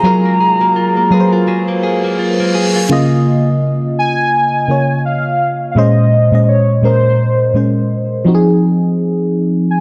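A velvety, wave-folded synth lead sings the melody up front with chorus, vibrato and tape echo over a round, dark FM electric piano with chorus and phaser in this dreamy, romantic R&B excerpt at 84 BPM, swung on the 16ths in Db major, while a thick, warbling unison pad and an electronic reverse cymbal both end at 2.9 seconds and a clean, direct-recorded electric guitar plays compressed, picked arpeggios through spring reverb and tape echo until 3.5 seconds, all set in light digital ambience and a dense, heavily limited modern master.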